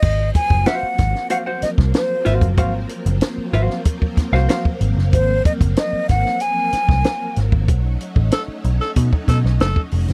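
Energetic and strutting, this dry, close 1970s-style funk fragment features a breathy, hollow jazz flute carrying the melody up front over a shimmering string machine pad of violins with ensemble chorus, a round, foam-muted picked electric bass and a compact cocktail drum kit with punchy kick, high-tuned snare and dark cymbals. A clean, compressed electric jazz guitar briefly adds accompaniment early on, and the band hits an accent at 7.7 s as the harmony moves from Ab13 to B9. A raspy, gritty tenor saxophone slips in a short second line at 8.3 s.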